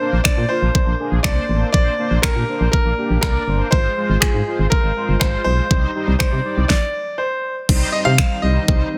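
Dense, heavily limited and modern with light reverb and digital ambience, this energetic, bittersweet dance-pop excerpt sets a clear concert grand piano melody with digital delay over mellow, detuned synth brass with chorus and sidechain pumping, a punchy, round FM bass that also pumps, and an up-front, overdriven electronic drum kit of knocking kick, fat snare, finger snaps and crash, all breaking for a stop from 6.7 to 7.7 seconds before a silky string machine enters very quietly at 8.0 seconds.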